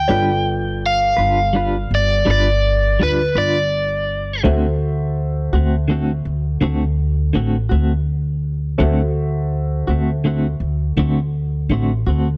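This short cut from a longer piece has a dry, close sound in a small room, with the feel of a 1970s studio recording. It is a soulful, gritty slow blues in 12/8 at 55 BPM with a straight feel, set in D mixolydian and moving from G7 to D7 at 4.4 seconds. A crunchy, overdriven electric guitar carries the picked melody up front with harmonic tremolo, then stops at 4.4 seconds. Beneath it, a twangy, scooped clean electric guitar plays compressed, picked accompaniment with tremolo, while a woody pizzicato upright bass with steel strings sits forward in the low register. A polished, warm upright piano fills in behind them, mixed lower than the other parts.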